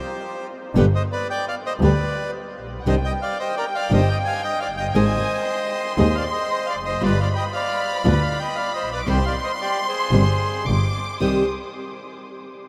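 A rubato tango in 4/4 at 115 BPM and C minor, this sultry, passionate fragment moves through chords such as Cmadd9, Ab and G7. A reedy, dark, airy bandoneon carries the melody up front over a smooth bowed double bass played with vibrato, while a fingerpicked flamenco guitar with fresh strings supplies the accompaniment. At 2.8 seconds a distant, lush symphonic violin section enters with a bowed second line, all of it soaked in a huge, dreamy ambient reverb.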